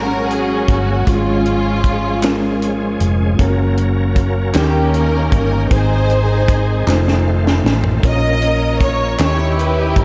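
A lush, smooth string section carries the melody up front in this uplifting, soulful slow gospel piece in 6/8, over a round, punchy hollow-body electric bass. A mellow tine electric piano accompanies in the background, and a bright tonewheel organ with key click, chorus vibrato and slow rotary speaker holds sustained chords behind it, while a tight funk drum kit with a high-tuned snare enters at 0.3 seconds and plays a fill from 6.9 to 8.0 seconds. Crisp, very quiet group handclaps join at 2.2 seconds, and the whole mix is soaked in dreamy hall reverb.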